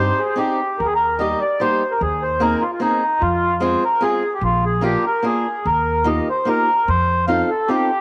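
A rubato 3/4 lilt at 148 BPM carries this nostalgic, whirling musette waltz in Eb major, taken from a longer piece. A reedy, mellow accordion with slow beating sits up front with the melody between Eb4 and F5, while a dark, boxy fingerpicked swing-style acoustic guitar accompanies and a woody pizzicato upright bass with steel strings and transformer saturation holds the low end, dropping out at 7.4 s. A moderate plate reverb gives the trio a soft glow as the harmony moves from Cmadd9 through Eb, Fm and Bb toward a closing F7.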